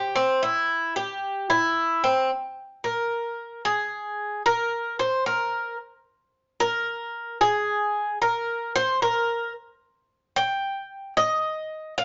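Heard in a moderate studio reverb with the highest treble trimmed away, this short cut from a longer Latin piece features a single acoustic Cuban tres, placed up front, its picked double courses sounding bright and metallic, with some strings doubled at the octave. At a danceable 112 BPM in a straight 4/4, tuned slightly above standard pitch, the tres moves from a brief opening into a sultry solo at 2.3 seconds that carries through to the end.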